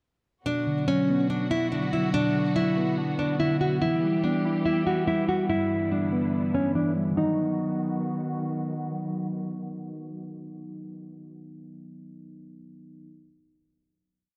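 Dark, low-pass-filtered production bathed in lush hall reverb frames this tense, menacing half-time drill piece: a fingerpicked nylon-string guitar loops a deep classical melody up front until 8.4 s, chorus-tinged muted felt-like synth keys repeat a soft, intimate rising eighth-note arpeggio through 13.0 s, and a bowed studio string section holds smooth, vibrato-laced sustained chords beneath, as a filter sweep runs across the breakdown before the final chord lands at 7.2 s.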